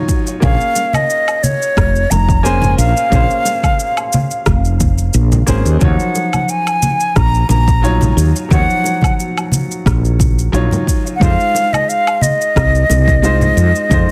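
A woody fretless electric bass sits up front in this sunset chillout excerpt, its dark, growly, round tone carrying the low end from F1 to F2 at 89 BPM in 4/4 with a gentle 16th-note swing. Above it, a mellow concert flute carries the melody in Eb dorian from 0.4 seconds, airy and soft in attack, with vibrato and a touch of delay. A clear grand piano with short sustain opens the piece at 0.0 seconds and plays accompaniment with its own delay, moving through Bbm9, Ebm9 and Fm7. A deep, tape-warm electronic kick drum and a layered kit of electronic shaker, woodblock and rim click, with soft clipping on the snare, drive the groove alongside saturated, compressed congas and bongos struck with hard hands. The mood is warm and smooth, framed by studio ambience and a dense, heavily limited modern master.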